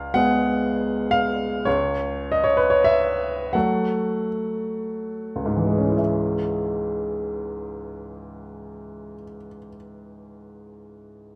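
Heard in the moderate reverb of a recital hall, a clear, intimate baby grand piano sits up front with long sustain and audible action noise, playing a mournful, wistful romantic nocturne in a rubato 6/8 that slows through its first 6.0 seconds before a new section begins in this short cut from a longer piece.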